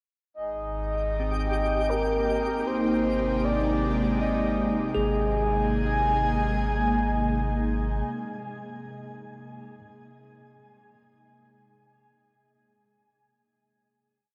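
Heard through a wet cathedral reverb, this complete ambient piece seems to float in a vast, echoing space, peaceful and weightless at 78 BPM in 3/4 and Ab major. A deep, round sub bass holds the root up front almost from the start, while a reedy, vintage pedal harmonium breathes a drone in the background. An ethereal, airy pad enters at 2.1 s with slowly shifting chords, moving from Abmaj9 to Abadd9, coloured by ensemble chorus and shimmer reverb. The breathy, flute-like synth lead sings a soft, free melody with vibrato, tinted by subtle chorus, cassette tape character, shimmer reverb and diffuse ambient delay. A twinkling granular texture adds a sparkling held high note with octave-up shimmer and fades out as the final chord arrives at 5.0 s. A bell-like tine electric piano turns one slow arpeggio loop in the background and rings on until 9.8 s, the last part to sound.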